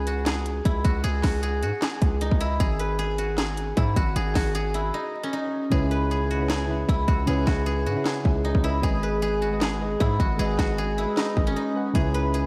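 A half-time trap beat at 154 BPM drives this brooding, melancholic hip hop excerpt in C# minor, with a hard-clipped kick, sharp snare, handclaps and metallic hi-hats under a heavy, saturated 808-style bass that sits up front. A silvery guzheng, played with fingerpicks, rings out with a diffuse ambient delay, and after a short break at 4.9 seconds, soft, round electric-piano-like synth keys with chorus enter at 5.7 seconds as the hi-hats drop out until 12.0 seconds. The dreamy mix is soaked in hall reverb and vinyl crackle.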